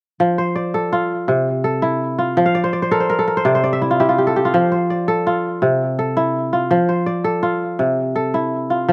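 Joyful and hypnotic, this brief excerpt from a longer piece of West African traditional music moves at 111 beats per minute in 12/8 with a straight feel, set in F major. A lone acoustic kora carries everything from 0.2 to 8.9 seconds, fingerpicking arpeggios that span from C3 up to F5. Its tone is mellow yet crisp, with ringing strings placed up front and a touch of slapback echo. Between 2.5 and 4.5 seconds the kora breaks into a short fill before settling back into its cycle, while the harmony simply alternates between F and C throughout. Captured outdoors, the sound is dry and intimate, with little reverb around the instrument.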